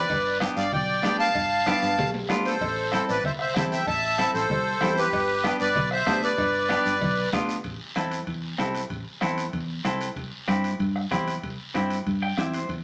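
Cumbia with a driving, passionate feel, this short cut from a longer piece puts a reedy, sweet accordion up front, close-miked, dry and full with a light tremolo tuning, carrying the melody until it drops out at 7.3 seconds. A clean, picked semi-hollow electric guitar, compressed and hollow-bodied, sits forward as accompaniment and closes with a brief fill at 12.1 seconds. Underneath, a fingered electric bass gives a warm, foam-muted tone, heard direct and amped. In the background sit a bombo struck with a soft beater, bright, thin-skinned, medium-tuned congas, and ringing metal-shell cowbell and timbales, joined by a raspy guiro, with a drum fill at 1.7 seconds. The chords move between G, A minor and C, and the band plays live in one room, bathed in wet studio reverb with a small speaker sound.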